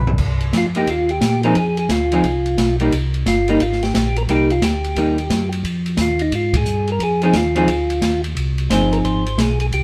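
Soul jazz organ trio with a soulful, late-night swing, caught mid-performance as the band plays live together in one room with light reverb. A mellow, round tonewheel organ carries the bass line with audible key click through a slow rotary speaker, while a second, percussive organ voice with third-harmonic percussion takes the melody from 0.6 seconds, and a clean, picked hollow-body electric guitar comps up front before dropping out at 5.2 seconds and returning briefly. An open acoustic drum kit with dark cymbals and a punchy kick kicks off with a fill, moves over Cm7 and Fm7 changes, and joins the band in an accent at 6.5 seconds.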